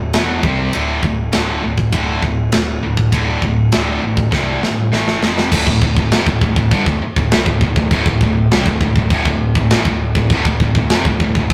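Two high-gain electric guitars and a fuzzed, picked bass open this dark, relentless heavy metal excerpt in D minor together, with a tight acoustic drum kit joining at 0.1 seconds at a straight 100 BPM in 4/4. Both guitars play distorted, picked riffs from D2 to C4, one with a bright edge and the other bright with a scooped midrange, and both sit in the background. Beneath them, the overdriven bass grinds out a punchy low line from D1 to D2 with a bright, direct and amped tone. The drums are up front and mid-forward in a big room, with a medium-tuned snare, a tight kick, and bright china, crash and ride cymbals. The riffs move through E5, C5 and D5 power chords, and a drum fill from 4.3 seconds carries the music over A5 and F5 into a new section on D minor at 5.5 seconds. Light reverb and tube saturation give the whole a rough, rehearsal-room character.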